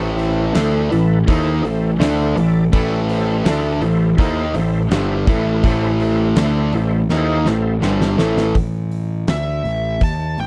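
Blues rock in a power-trio, southern rock vein, this brooding, heavy excerpt opens with a bright, double-tracked fuzz guitar riff over a round, punchy fuzz bass and a huge arena drum kit with a fat snare and punchy kick, while a gritty overdriven tonewheel organ holds sustained chords in the background through a slow rotary speaker with chorus vibrato. A drum fill at 7.1 seconds leads into a change of section at 8.6 seconds, where the riff guitar and organ drop out, and shortly after a dark, bluesy overdriven lead guitar enters for a short solo over the bass and drums. The sound is dry and close, in the manner of a 1970s studio recording.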